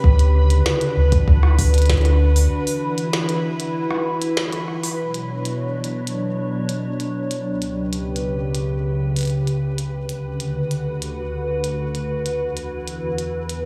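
A straight 4/4 pulse at 97 BPM from a soft electronic kick and a glitchy kit of clicky hi-hats, rim clicks and a tiny snare drives this melancholic, cerebral IDM piece in B minor, where a glassy, ethereal FM pad with ensemble chorus holds sustained chords up front, a round sine sub bass sounds alongside the kick, which drops out at 2.0 s, and carries on until about 2.5 s, a bubbling, resonant sawtooth texture with random filter steps murmurs in the background until 5.0 s, and from 5.0 s a filter sweep moves across the pad over chords such as D6, Esus2 and Bmadd9, all within a light small-room ambience.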